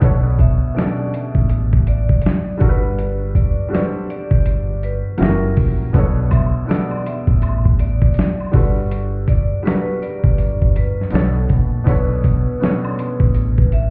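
This reflective, melancholic lo-fi hip hop excerpt opens with a muffled, thumpy sampler-style drum kit carrying 12-bit grit, a dark, round fingered electric bass up front, and a felt-muted upright piano whose soft, intimate chords arrive with audible action noise and cassette tape coloring, all over a swung 4/4 groove. At 0.4 seconds a bright, ringing vibraphone with slow motor vibrato enters on the melody through tape echo, drifting over chords that move between Bm9, Gmaj9 and F#7b9. From 5.9 seconds distant maracas and woodblock add a faint background layer, and the whole mix sounds as if heard through a wall into a reverberant club.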